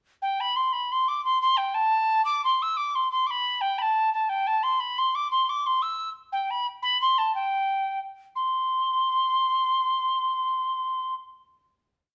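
Bright and rollicking, this short Celtic jig in 6/8 is a complete little piece carried entirely by a solo wooden whistle. The whistle plays from 0.2 seconds to 11.1 seconds, spinning a motif-based melody in balanced period phrases that moves between G5 and E6. Its tone is pure, warm and woody, with a chiff on tongued notes and a touch of vibrato, and it sits up front in the sound. The tune runs as a single strain before settling onto a final note held from 8.4 seconds to 10.4 seconds. A wet stone-room reverb surrounds the whistle, giving the feel of a live performance in one resonant space.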